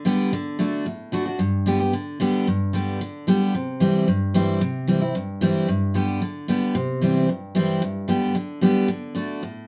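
Joyful and lively, this brief bluegrass excerpt at a brisk 224 BPM in G major features a solo picked steel-string acoustic guitar with a full-bodied dreadnought tone, placed up front in a moderate studio reverb, moving through D, G and C chords across G2 to G4 for just under 10 seconds.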